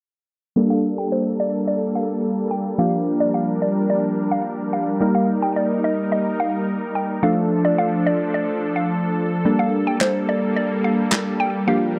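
Bittersweet and driving, this dance-pop excerpt moves at 108 BPM in G minor, with up-front warm analog keys (round, detuned sawtooth, with chorus and a filter sweep) and a lush, airy supersaw pad holding chords that move from Gmadd9 through Bb6, Eb and Dm before returning to Gmadd9. Above them a woody, mellow mallet-like synth pluck carries the melody, colored by chorus, phaser and a slapback echo. An electronic, sampler-style snare with handclaps arrives only at 10.0 s, all captured in a dry, close 1970s-style studio sound with light reverb.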